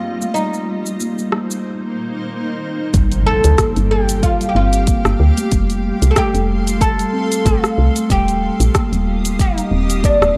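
Hypnotic and warm, this organic downtempo cut moves at 93 BPM in G minor with a gentle 16th-note swing, drawn from a longer piece. A plectrum-plucked, fretless oud carries the melody up front with a tape echo, its double strings giving a woody, acoustic tone. Alongside it a granular cloud pad holds blurred, detuned sustained chords with its own reverb and sidechain pumping. A steel tongue drum plays soft, ringing arpeggios with tape echo under a filter sweep, while a deep house kit adds dark hats, rim click and shaker. After a break from 1.7 seconds, a layered electronic kick, a round FM bass with sidechain pumping and a background impact all enter at 2.9 seconds, as the chords move through Gm7, F and Ebadd9. The dark production carries a light reverb.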